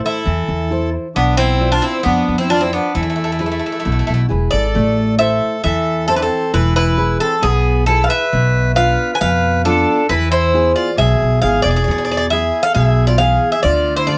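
The up-front Greek bouzouki carries the melody with a metallic, double-string ring, some strings doubled at the octave, in this dramatic, tense Greek folk band excerpt, moving at 134 BPM in a straight 4/4 and settling into A harmonic minor from 4.8 s. A reedy, hollow accordion plays a second line, while a fingerpicked nylon-string guitar with a full-bodied, deep classical tone supplies the accompaniment. Beneath them, a woody, thumpy pizzicato upright bass sits prominently over changes that circle Am, Bdim and E before reaching Dm at 13.6 s, all inside a small, moderately reverberant room.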